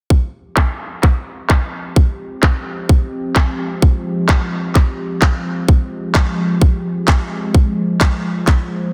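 Bass house with a gritty, swaggering feel and a light swing, cut from a longer piece. A tight, up-front, tape-warm electronic kick drives from 0.1 s, and layered, tape-warm electronic handclaps join at 0.6 s with a low-pass filter and studio reverb. A sweeping, resonant pad of detuned sawtooth and wave-folded tones holds a sustained chord through chorus, phaser and sidechain pumping, all set in light reverb under a dense, heavily limited master.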